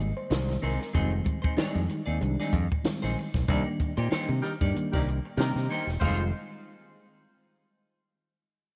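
A bright, up-front fingered electric bass drives this cool funk clip at 95 BPM in F dorian, with a lightly swung sixteenth feel over Fm7 and Cm7. A compact, dry cocktail drum kit with dark cymbals, a high-tuned snare and a tight kick sits beside it, while a clean, picked semi-hollow guitar adds hollow-body accompaniment. A mellow, reedy electric piano with fast tremolo opens with a fill and then plays stabs, a clear vintage horn section with light vibrato joins on a second line at 4.4 s during a band accent, and a moderate echo-chamber reverb surrounds the band.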